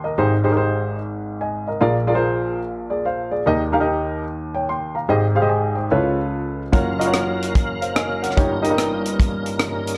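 A dark, warm studio sound with a light touch of reverb frames this short fragment of an uptempo, soulful and jubilant gospel piece at 146 BPM in 4/4, swung on the eighths and centered in Ab major. A baby grand piano carries the accompaniment alone from the start, placed up front with a warm, intimate, natural tone, short sustain and audible action noise as it moves through Abmaj7, Bb7 and Eb, reaching deep into the bass and high into the treble. At 6.7 seconds, with the harmony landing on Gbmaj7, a tonewheel organ joins with full, lightly overdriven sustained chords, its fast rotary speaker and chorus vibrato giving it a churning shimmer beneath the piano. A tight funk drum kit enters at the same moment, acoustic and up front in a small room, with a tight kick, hi-hat and rim clicks. The passage closes on Eb7/G, the rich, warm blend of piano and organ lending it a churchy glow.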